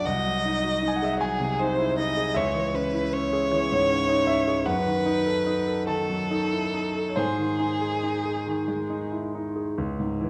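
Romantic classical music for violin and grand piano, elegiac and yearning, moves in a rubato 6/8 at roughly 46-53 BPM in C# minor. The solo violin carries the melody with a rich, focused tone, vibrato and a smooth top, sounding up front until 9.1 seconds. The concert grand accompanies with a clear, natural sound, deep bass and long sustain until 10.3 seconds, and both sit in a recital hall's wet reverb in this brief fragment of a longer piece.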